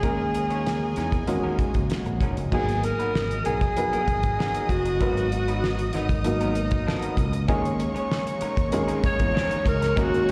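A breathy, whispered alto saxophone opens this smooth, cinematic slice of lush 1970s-style soul, carrying the melody over a worn baby grand piano with audible action noise and a short sustain, both touched with slapback echo. Underneath, a damped 70s drum kit with a fat snare and tight kick sits dry and up front beside a growly, overdriven fingered electric bass, while a slightly broken-up, lo-fi electric guitar plays a picked riff through a small old amp in the background. A very quiet, clear string section holds sustained chords over the opening D#7sus4 until 2.5 seconds, when the harmony moves to G#m9 and the saxophone steps into a jazz-style solo. At that point a bowed violin section enters with an even, smooth second line, lush with vibrato and slapback echo. The clear strings return at 7.5 seconds as the chord moves back to D#7sus4, with everything heard in a steady 4/4 at 97 BPM through a venue's PA with recital hall reverb.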